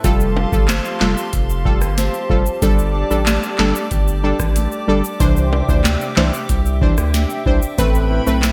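Dancehall at 93 BPM in 4/4 with a sultry, bouncy mood and a bright 1980s-style digital sheen, cut from a longer piece and moving through Fadd9, Gsus2, Cadd9 and Amadd9. A booming analog drum machine sits up front with a deep kick, crisp snare, handclaps, rim click and metallic hi-hat under gated reverb, while a thick, saturated sub bass and punchy, brassy sawtooth synth stabs with chorus drive the groove, joined by close, dry egg shaker and timbales. Behind them, a hollow, flute-like pad pumps under sidechain, and a boxy parlour steel-string acoustic guitar fingerpicks arpeggios in the background with subtle chorus and delay.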